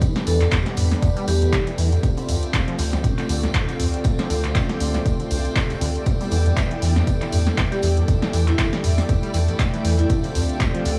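An overdriven, punchy analog kick sits up front from the start, joined by a dry, punchy drum machine with handclaps, hi-hat and snare, a pumping, low-tuned acoustic kit in a bright stone room and a jingly tambourine, giving this trippy, swung acid house excerpt its push. A squelchy, resonant sawtooth acid bass riff with overdrive, lush chorus and tape echo runs under a filter sweep in the background, while a deep, round bass enters at 0.3 seconds, and a smooth, detuned pad with a moving notch holds Em7 and Dm7 chords beneath a cloudy, blurred granular texture. A metallic, ringing vibraphone with tape echo plays a short melody from 0.3 seconds and returns at 7.7 seconds, all within a small room ambience.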